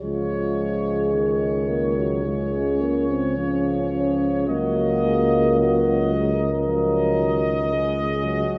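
A lyrical, serene, hymn-like classical passage for brass band, cut from a longer piece, opens with every voice sounding together at a flexible rubato pace: the clear trumpet section carries the melody with light vibrato and a loose section blend, a dark, distant French horn section adds a second line in the background, a mellow solo euphonium accompanies until 7.7 s, a warm, roomy trombone fills out the accompaniment from the background, and an up-front tuba with a smooth top holds the bass, the whole band heard from further back in a wet concert hall.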